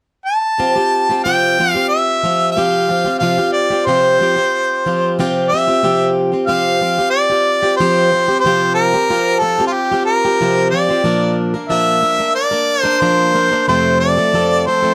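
A straight 4/4 pulse at 92 BPM carries this hopeful, open-road rock fragment in C mixolydian, taken from a longer piece. A bright, pop-style harmonica takes the solo melody from 0.3 seconds, sitting up front with a light vibrato. At 0.6 seconds a warm, boxy, plugged-in acoustic guitar joins, picked in a swing style and also placed up front, grounding the tune on a Csus4. The music moves into a second section partway through, and the harmony finally shifts to Bb at 11.1 seconds before landing on F. A light reverb gives the pair a sense of space while keeping the sound close and direct.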